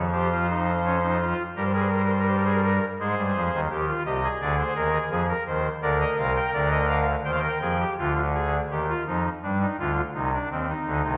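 In a straight three-beat pulse, this joyful, elegant excerpt from a baroque-style three-part fugue features a solo pipe organ on a soft reed oboe stop with romantic voicing and tremulant, placed up front in a wet recital-hall reverb, shifting into a new section at 8.0 seconds.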